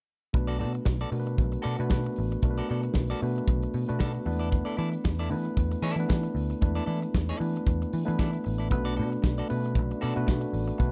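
Disco at 115 BPM in B minor, glamorous and danceable, with a lightly swung sixteenth feel moving from Bm7 to E7sus4 and back. A punchy, foam-muted vintage bass and a modern drum kit with a punchy kick and medium-tuned snare sit up front in a small, roomy space, joined by a worn, slightly out-of-tune tine electric piano through its built-in speakers and a dark, clean semi-hollow electric guitar with a warbly pitch drift. At 8.7 seconds a mellow, tight French horn section enters in the background with sustained chords, in this brief excerpt cut from a longer piece.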